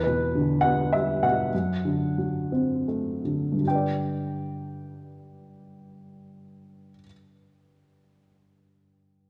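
A wet echo chamber gives this short folk recording a 1.7-second reverb tail around a dark upright piano that sits up front, its woody tone and audible action noise lending a close, vintage character. The piano carries the melody on its own from 0.0 to 9.3 seconds, ranging from E2 up to G5 with a mellow, smooth touch and short sustain. The mood is nostalgic and intimate, set in an unhurried three-beat metre with a straight feel. The opening passage slows down through its first 3.6 seconds, moving from Em7 to D7/F# before settling onto G as a new section begins at 3.6 seconds. Cut from a longer piece, it feels like a quiet, reflective fragment of a larger tune.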